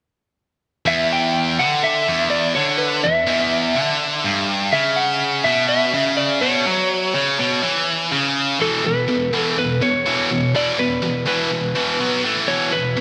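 Rock at 124 BPM in E dorian, aggressive and driving, where an up-front, double-tracked, high-gain distorted guitar picks a low riff over Em and Bsus24 before shifting at 8.6 s to E5, B5 and A5 power chords, while a compressed, slightly broken-up lead guitar with delay carries the melody above it, all set in a lush hall reverb with bright 1980s-style digital production in this short excerpt cut from a longer piece.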